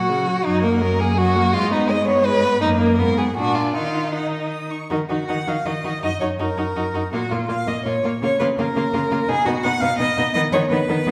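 This quick classical-period movement for string quartet in Eb minor moves in a lively, spirited 3/4 at 165 BPM, with a rubato feel that lets the phrasing breathe. The first violin carries the melody up to Eb6 with a rich, smooth and even tone, its vibrato sounding somewhat distant, while the second violin's expressive line adds portamento slides and its own vibrato. The viola sits close and clear beneath them, filling in the accompaniment with an even, bowed sound, and the cello joins at 0.4 s with a focused bass line reaching down to Gb2. The harmony leans on Ebm/Gb, Abm, a Fdim/Ab to Bb7 turn settling on Ebm, then shifts toward Bbm and a B chord in the second section that begins at 4.9 s. The quartet is heard from further back in a wet recital hall with a 1.4-second reverb, and this short passage is cut from a longer piece.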